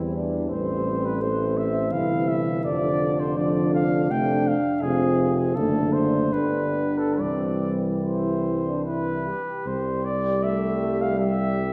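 A tender, hymn-like classical passage for brass band opens with all five parts sounding together in a rubato triple metre. The cornet carries the melody up front with a mellow tone, light vibrato, a soft attack and a smooth top, while a tight, roomy French horn section supplies a second line and a close-miked euphonium and a smooth-topped trombone sit in the background as accompaniment. A punchy, distant tuba anchors the bass as the chords move from C/E through Am7 and Fm to D7/F#, G and a settling C at 7.2 seconds, the band heard from further back in a wet concert hall.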